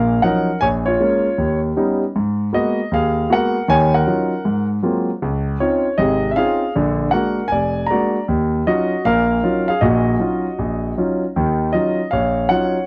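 Swung eighth notes in 4/4 drive this brief solo jazz passage, a smoky, late-night fragment cut from a longer piece and played by a single grand piano that sounds natural and sits up front in the mix. Spanning deep bass to bright upper notes, the piano moves through rich minor-ninth, thirteenth and major-ninth harmonies, with an opening phrase that starts to repeat at 11.3 seconds before the clip ends at 12.9 seconds. Close, detailed microphones and light reverb give the instrument an intimate, warm presence.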